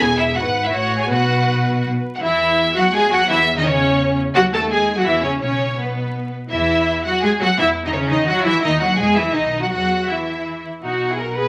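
A quick, graceful and cheerful classical-period movement for string orchestra in triple time, cut from a longer piece, with an up-front, focused violin section carrying the vibrato-rich melody over a smooth, distant second violin line and violas, a close, even cello bass and an expressive double bass section, all set in a large, wet reverb with vinyl crackle.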